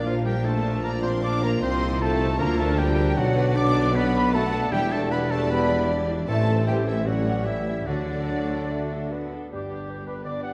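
A fast, urgent and dramatic romantic orchestral passage, cut from a longer piece, opens with a clear, intense violin section carrying the melody with vibrato, while a rich second violin section, an oboe, a soft-attack flute section and a very quiet clarinet weave secondary lines over a viola section and a mellow bassoon. Beneath them, a dark double bass section, a tuba and a rich, close cello section hold the bass, a ringing fingerpicked harp adds hushed arpeggios, and a French horn section sustains chords in the background from 0.1 s. At 9.5 s a distant, roomy trumpet enters up front with stabs, the whole orchestra set in a wet scoring-stage reverb with a dark, warm production.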